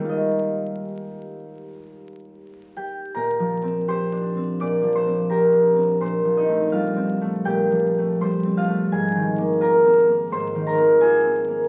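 A concert harp opens at once on an Ebadd9 chord, heard through the crackle of a very old 78 rpm record, in this serene, graceful classical excerpt cut from a longer solo piece. Played alone, the harp sounds warm, thumb-plucked and ringing, sitting up front and spanning Eb2 to D6, with its tuning set to A4 = 443 Hz. The pulse is rubato in 4/4, drifting between 76 and 87 BPM. The music begins in Eb major, then moves into Bb mixolydian at 3.2 s on a Bb69 chord, passing through Gm11/Bb and settling on Ab69 at 8.9 s. A wet stone room reverb gives the harp an echoing space until it stops at 11.7 s.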